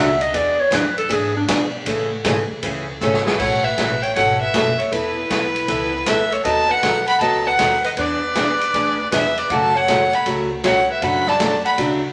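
A swung 4/4 groove at 157 BPM drives this playful, down-home western swing piece in A major, where a vibrato-rich, close-miked clarinet with subtone and scooped notes opens with a jazzy solo over bright, picked archtop guitar, woody, thumpy pizzicato upright bass and a distant, roomy big-band drum kit with punchy kick, until a drum fill at 3.0 seconds ushers in a clear, earthy bowed fiddle up front on the melody while the clarinet carries a second line, the ensemble set in a large studio reverb.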